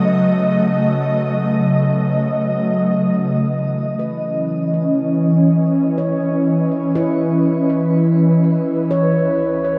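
An ethereal, airy pad opens this serene, melancholic ambient excerpt, holding detuned sawtooth chords up front over B/C# with a slow attack and long release, its ensemble chorus and shimmer reverb giving it a shimmering bloom. The pace is an unhurried 61 BPM in 3/4 with a straight feel, settled in C# minor. At 3.0 seconds the harmony moves to C#m9 and a filter sweep begins shaping the pad. The handpan enters at 4.0 seconds with mellow, ringing arpeggios of stainless steel under soft fingertips, sitting lower in the mix and trailed by tape echo and shimmer reverb. A final shift to Eadd9/C# arrives at 8.9 seconds. The whole passage floats in a cathedral-like space with a long, wet decay, and it is cut from a longer piece.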